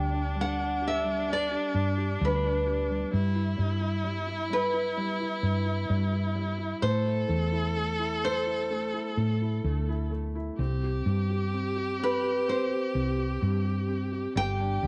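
A dark, round fretless electric bass sits up front in this intimate, tender acoustic folk-pop ballad, its hollow-body tone amped yet woody as it holds the low end in a straight, unhurried 4/4. Above it, a fingerpicked nylon-string guitar carries the melody with a classical touch, high in its register. A single bowed viola traces a second line beneath, rich and expressive with vibrato and portamento, though it sounds distant in the mix. A felt-muted upright piano fills in the accompaniment, soft and mellow with a boxy, thin-felt character and audible action noise. The harmony moves from G5 to G6 at 3.1 seconds, through Am and C5, and back to G5, all within a small room ambience on this short passage cut from a longer piece.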